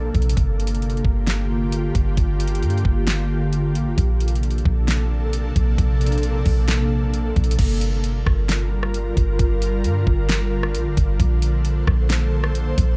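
A hazy digital ambience frames this ethereal cloud-rap excerpt in G minor at 133 BPM with a half-time feel. A detuned, airy pad with chorus and reverb sustains Gm7 and Bbmaj9 chords over a soft, round 808-style bass, while a smooth R&B kit adds a knocking kick, fat snare, metallic hats, rim click and crash from 0.1 to 12.9 seconds.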